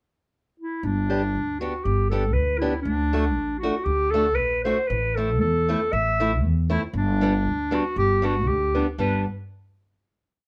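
Jolly and bouncy, this short alpine folk piece for a small dance band moves at 118 BPM in a lightly swung 2/4, in G major. A clear, soft-attacked clarinet carries the melody in a classical style, entering in a pickup at 0.6 seconds and spinning song-like motif-based phrases that sound distant and roomy even as the instrument sits up front. An upright bass joins at 0.8 seconds with woody, pizzicato root-and-fifth notes on the main beats, while a picked acoustic archtop guitar, dark and boxy with the character of old strings, adds off-beat triad chords from 1.1 seconds. The harmony moves through G, D, A minor and back to G before the tune settles on a final chord at 9.0 seconds. Light reverb and a dark, warm production round out the recording.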